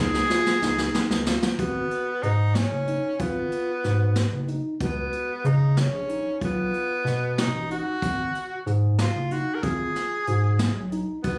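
Caught on a phone in the room with a light studio reverb, this tense, brooding progressive instrumental fragment moves in a straight 5/8 at 186 BPM (eighths) in G# dorian: a brush drum kit with a boomy kick opens with a fill while a breathy, whispered tenor saxophone carries the melody over mellow, phased tine electric piano arpeggios and a round, deep analog bass, and the harmony passes from C#sus2 through G#m7, C#7sus4 and B to G#7(no3).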